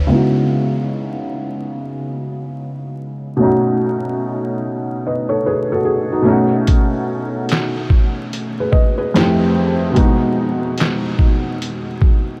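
Reflective and melancholic, this lo-fi hip hop excerpt opens on a felt-muted upright piano, soft and intimate, sitting up front with cassette tape coloring and a low-pass filter that sweeps across its whole run. The piano carries the harmony through C#m11, B7, Fmaj9 and B6, moving through a swung 4/4 feel. At 6.7 seconds a sampler-style drum kit arrives with a thumpy kick, a medium-tuned snare, hi-hat and handclaps, all compressed, pitched down and muffled with 12-bit grit. The drums stay up front until 12.3 seconds, just before the piano finishes at 12.4 seconds. A huge ambient reverb with a 7.2-second decay and a layer of vinyl crackle soak the mix in a dreamy haze.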